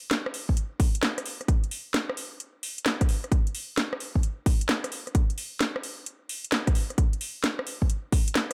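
A layered garage drum kit of metallic hi-hats, rim clicks and a cracking snare opens this soulful, skippy UK garage excerpt at 131 BPM with a 66% swing on the sixteenths, soon joined by a punchy, tape-warm electronic kick drum sitting up front, both carrying small room ambience under light reverb.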